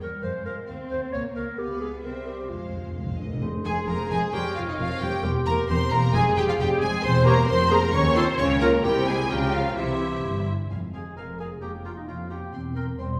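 In a straight, brisk 2/4, this stormy, urgent excerpt from a quick classical-period orchestral movement sets a close, expressive violin section on the melody above a smooth solo clarinet and a focused, distant second violin section. Even violas, portamento-inflected cellos and a woody double bass section fill out the accompaniment and bass. Hard-mallet timpani punch a fill at 2.5 s, and a mellow, roomy solo oboe enters at 3.4 s. At 3.7 s an airy flute ensemble joins alongside a dark French horn section holding sustained chords, all blooming in the reverberant hall.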